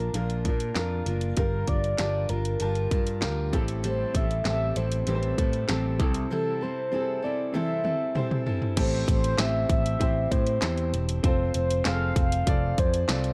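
Piano-driven pop with a hopeful glow, where a round, horn-like sawtooth synth lead with soft attack, vibrato and chorus carries the melody over an open, long-sustaining baby grand piano, a full-bodied picked jumbo acoustic guitar riff with audible finger squeak that stops at 8.8 s, a bright, amped electric bass up front, and a punchy, layered house drum kit with bright hats and handclaps whose fill runs from 7.5 to 8.8 s, all in a dark, warm, nearly dry mix.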